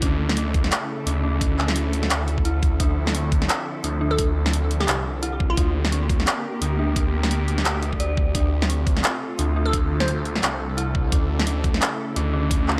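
A heavy, tense stretch of half-time drum and bass in D minor at 173 BPM, cut from a longer piece, opens with everything but the lead already in place: a thick, swirling detuned saw bass with phaser sits up front, pinned low between C2 and D2, while a knocking electronic kick and a drum kit with a cracking snare, bright hats and handclaps drive the swung half-time groove. Above them, a muted cello section bowed con sordino holds veiled, lush chords with vibrato, pumping against the sidechain, and an eerie, inharmonic FM synth bell spins warbling arpeggios coloured by chorus, tape echo and vintage 12-bit sampler grit. The harmony moves slowly over a D pedal, from A/D through Dmadd9, Gm/D and F/D before returning to A/D at 11.1 seconds. A glassy, crystalline wavetable pluck with a nasal edge and a filter sweep cuts in briefly at 4.1 seconds and again at 9.7 seconds, its short notes spread by chorus and tape echo. 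Light reverb frames the mix, with the low end and drums pushed forward and the strings and bell sitting darker and further back.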